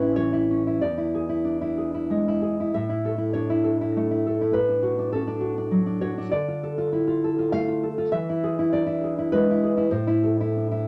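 In 3/4 at about 99 BPM, the beats stretch and give with a rubato feel, so the pulse breathes unevenly. This romantic piece for solo nylon-string guitar in A major sounds passionate and wistful, a brief passage cut from a longer work that lasts about 10.9 seconds. The guitar sits up front with a full-bodied, deep classical tone, its thumb-plucked notes ranging from a low E2 to F5, and small finger squeaks catch the ear along the way. The harmony moves from A through E7 and back to A, then to D/A and a yearning Dmadd9 before E7 returns and the passage closes on A minor at 9.9 seconds. A moderate small-room reverb gives the instrument an intimate, close sense of space.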